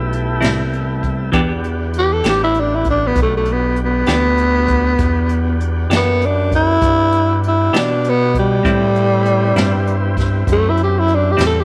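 A growling, breathy tenor saxophone carries the melody of this mournful, soulful slow blues in E minor, entering at 2.0 s up front with raspy scooped notes and vibrato. Beneath it, a twangy clean electric guitar with tremolo, a smooth, saturated synth bass and a jazz kit played with brushes hold a 12/8 pulse at 66 BPM, while a tonewheel organ sustains chords through a slow rotary speaker. The harmony moves from Am7 to Em7 and back to Am7 at 8.6 s under a light reverb, in a passage cut from a longer piece.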